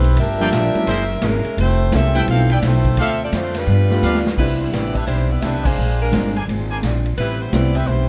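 Upright bass sits up front in this brisk big band swing fragment in C major, its pizzicato gut strings sounding woody and thumpy at 171 BPM in 4/4 with a swung eighth-note feel. A clear saxophone section carries the melody with light vibrato and a smooth top, while a vintage trumpet section adds brassy stabs between 0.4 and 6.8 seconds. A concert grand piano comps with an intimate tone, audible action noise and short sustain, and a boxy picked archtop guitar with finger squeak sits in the background. The drum kit sounds distant and roomy, with a punchy kick, a medium-tuned snare and a rolled-off top on hi-hat, ride and crash, and a drum fill at 4.0 seconds leads into a second section built on Cmaj9, Bb9 and Am9. Light reverb surrounds the band, and a full band accent at 5.6 seconds keeps the swinging mood lively.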